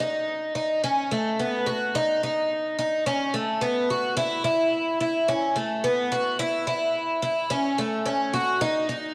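A picked twelve-string acoustic guitar carries this brief dream pop fragment on its own, sitting up front from 0.0 to 9.1 seconds. Its fresh strings give a bright, shimmering, octave-doubled tone with a parlour-sized character, moving within a modest middle register. A lush chorus and analog delay wrap the guitar, while a moderate concert hall reverb lends the space a floating, dreamy air. The straight 4/4 feel and mixolydian colouring keep the mood gently suspended. The recording was captured on cassette tape, and this is a short cut from a longer piece.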